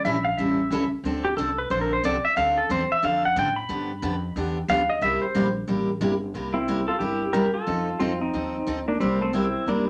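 Country excerpt at 181 BPM in C mixolydian, playful and swinging, where an up-front, clean, compressed pedal steel guitar played with fingerpicks and slide solos with volume swells through the first 6.3 seconds over a full-bodied, fresh-stringed dreadnought acoustic guitar and a woody, thumpy pizzicato upright bass, all set in a small, wet room as the chords move from A7 and Dm7 through G7 to C7 and F7.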